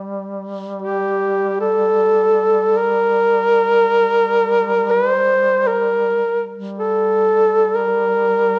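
A soft-edged duduk drone on G3 opens this mournful Caucasian folk lament in G minor, sounding its long tone with vibrato and scooped notes in free time. At 0.8 s a mellow, close-miked duduk enters up front with the melody, moving between G4 and C5 with its own vibrato and scooped inflections. A moderate recital-hall reverb lends the longing passage a sense of space, and the music is cut from a longer piece at 8.6 s.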